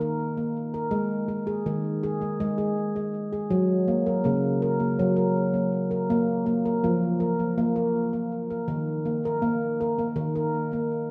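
A solo handpan, bright and ringing with a stainless-steel edge and sharp finger strokes, sits up front with delay in a wet scoring-stage reverb, carrying a meditative, hypnotic world piece in Eb minor at 162 BPM in a straight 7/8 through harmonies moving from Eb at 0.0 s through Ab, Gb and Bb back to Eb at 8.7 s in this 11.1-second cut from a longer piece.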